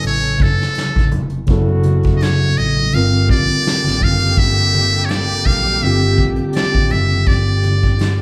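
Heard as a band playing live in one roomy studio, this sultry, late-night neo-soul excerpt puts a buzzy, brilliant metal-muted trumpet up front with light vibrato over a mellow tine electric piano, a round, foam-muted electric bass, a dark brush drum kit with a punchy kick, a loose horn section in the background and very quiet, distant congas, as the chords move from F#m9 to Gm7 at 2.9 seconds.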